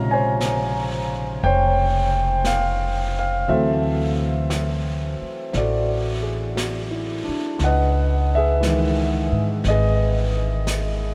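Jazz ballad in a slow, swung 4/4, intimate and romantic, taken from a longer piece. A concert grand piano sits up front as the accompaniment, its tone rich with deep bass and long sustain, while a pizzicato upright bass on steel strings plays close by with a woody, thumpy sound. A vintage brush kit enters at 0.4 seconds, sounding distant and roomy, with brushes on a medium-tuned snare and hi-hat and a rolled-off top end that keeps it well behind the other two. The harmony moves through lush ninth chords, starting on Bbm9 and passing through D9 before settling on Dbm9 at 7.6 seconds. A huge, wet ambient reverb soaks the mix, giving the whole trio a dreamy, floating atmosphere.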